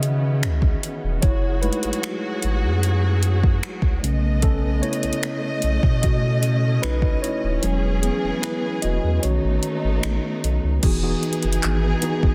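This contemporary R&B excerpt, cut from a longer piece, carries a moody, longing atmosphere over a straight, unhurried groove. A mellow tine electric piano takes the solo role for the first 10.8 seconds, its clean tone heard through built-in speakers, while a studio string section holds sustained chords with expressive vibrato and a soft, bowed attack that sits close. Underneath, a deep, round sine sub bass with a fast attack sustains up front, and an electronic, produced drum kit of soft kick, metallic hi-hats, finger snaps, handclaps and crash cymbal shares that forward placement, with soft clipping on the snare. The kick drops out from 7.6 to 10.8 seconds, and at 10.8 seconds a new section arrives as the harmony settles from the C#m9 opening toward Emaj7. Digital ambience surrounds the mix, which is finished as a dense, heavily limited modern master.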